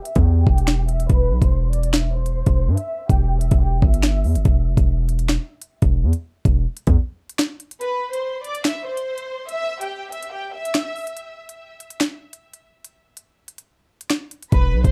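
Ominous half-time drill hip hop at 143 BPM in E minor, where a lush, distant bowed violin section carries the vibrato-laden melody through a filter sweep, plate reverb and delay, over an up-front electronic drum kit of knocking kick, sharp snare, crisp hats and finger snaps and a punchy, saturated 808-style bass that drops out at 7.0 seconds and returns at 14.5 seconds, within a dark, dry production cut from a longer piece.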